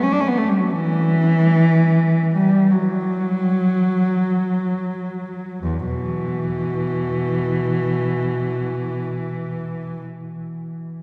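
A lone bowed cello opens this yearning, meditative classical fragment in E minor, playing with smooth, even vibrato and a close, up-front tone from E2 to D4, slowing through its first 5.6 seconds at a free, rubato 16-36 BPM in dotted-quarter 6/8 before a second section begins, while a cathedral reverb with a 5.0 s decay wraps the single player in resonant space heard from further back in the room, tuned to A4 = 439 Hz.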